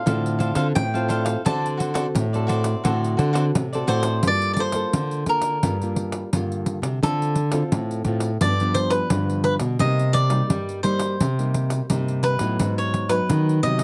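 A straight 4/4 samba-and-choro groove is carried by a jingly, close and dry pandeiro played with hard hands and sitting up front, joined by a dark nylon-string guitar bass line with audible finger squeak. The mood is nostalgic and bittersweet. A bright, crisp cavaquinho carries the melody up front, opening with a solo passage while a second, softer picked cavaquinho adds accompaniment until 4.2 seconds. A fingerpicked classical nylon-string guitar fills out the harmony, which drifts from Dm7 and D7 into Gm9, then through G7 and Cm7 before landing on an unexpected Abm7. Close, detailed microphones and light reverb give the acoustic instruments an intimate presence in this excerpt from a longer piece.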